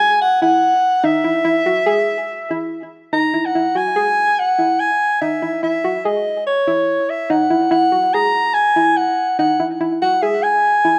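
Set in a small, wet room, this bright, driving progressive instrumental excerpt in 5/4 at 144 BPM pairs a dark, roomy soprano saxophone melody in jazz style, with light vibrato, scooped notes and digital delay, against soft, round plucked arpeggios thickened with chorus and delay over an Emaj9/D# chord, both parts playing throughout the 11.0 seconds as a new section arrives at 3.1 s.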